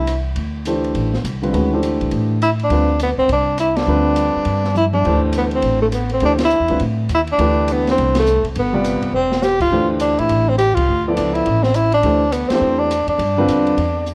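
A brisk swing at 206 BPM in 4/4, with a lilting eighth-note feel, drives this searching, hypnotic modal jazz fragment in D dorian, cut from a longer piece. A woody, thumpy pizzicato upright bass sits up front on steel strings, while an open acoustic drum kit plays with dark cymbals, a high-tuned snare and a boomy kick, adding fills at 4.8 and 9.1 seconds. A grand piano with a natural, warm tone comps through chords that shift between D7sus2, Csus2, Cadd9 and Dm9. After a brief opening breath, the breathy tenor saxophone returns at 2.4 seconds to carry the solo melody up front, whispered and intimate, with vibrato, a soft attack and scooped notes. The band hits accents together across the passage. The whole recording is bathed in a moderate large-studio reverb and a worn, warbling cassette-tape character, with a warbly pitch drift.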